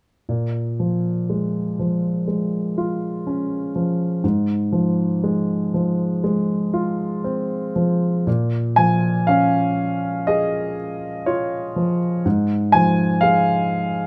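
Closely miked and nearly dry, this short cut from a longer classical piece puts a polished, clear grand piano up front, its notes ringing with long sustain. Playing alone in a lyrical, rubato style, the piano spans a range from the low middle register into the treble, carrying a wistful, dark mood. The passage moves through two sections, the second arriving at 8.3 seconds and returning to the opening harmonies before the cut ends at 14.1 seconds.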